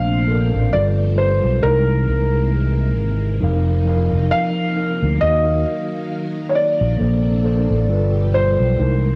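Hip hop at a relaxed 67 BPM in Bb major with a gentle 16th-note swing, dreamy and nostalgic, moving through chords such as Bbmaj9, G9, C7alt and Ebmadd9 in this short cut from a longer piece. A soft, felt-muted upright piano carries the intimate melody up front, over a mellow, clean tine electric piano heard through its built-in speakers and a shimmering, vintage string machine of violins holding slow-attack chords with ensemble chorus. A dark, round, punchy fretless bass sits forward with transformer saturation and analog chorus, while the keys and strings share a low-pass, cassette-tape haze, all set in light digital reverb with the feel of a home recording on tape.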